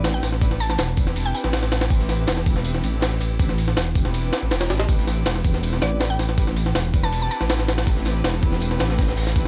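A gritty, sampler-style jungle drum kit drives this frenetic, dark drum and bass excerpt in a straight four, its thumpy kick, high-tuned snare and ride cymbal compressed, pitched up and pushed hard with overdrive at the front of the mix. Behind it, a second layer of tambourine and snare sits in the background, an acoustic studio-room sound that is smooth, saturated and rolled off at the top, with high-pass filtering on the snare, the percussion and the room. A deep, rumbling detuned saw bass holds the low end throughout, its beating sawtooth tone sustained and up front. A dark chamber string section plays soft-attack sustained chords over a single Am11 harmony, bowed sul tasto with light vibrato for an intimate, close ensemble feel. A woody, round mallet-like FM synth pluck adds brief melodic figures from 0.0 to 1.4 seconds and again from 5.8 seconds, its decaying notes treated with chorus and dub echo in the background. 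The whole passage sits in a small room reverb.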